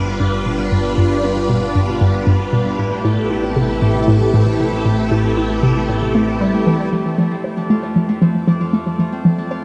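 A hollow, warbling square-wave pluck with a vintage, detuned character leads this expansive, cosmic stretch of sequencer-driven ambient space music at 116 BPM, its bouncy riff treated with chorus, cassette tape and tape echo. Alongside it, a swirling, bright phased string machine holds sustained chords up front, while a ringing, fingerpicked concert harp plays arpeggios through tape echo and shimmer reverb. A dark, breathy wind-like noise texture sits very quietly underneath, and an evolving analog drone anchors the bass until 6.9 s, as the harmony moves from G7 to Am7 and settles on F6, all steeped in a dreamy wash of vast reverb.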